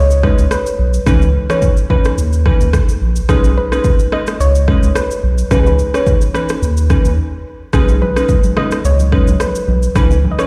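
Breezy and joyful, this afrobeats excerpt moves at 108 BPM in B major with a lightly swung 16th-note feel. An electronic afro-pop kit with a deep kick, rim click and shaker sits up front beside a round sine sub bass. Glassy digital keys with chorus and a filter sweep, along with a soft, dark pluck melody treated with chorus and delay, alternate between B69 and C#m9 chords. After a brief break at 7.2 seconds, ringing acoustic congas played with soft hands enter in the background at 7.8 seconds, and the whole track sounds as if played through a big sound system in a bare room.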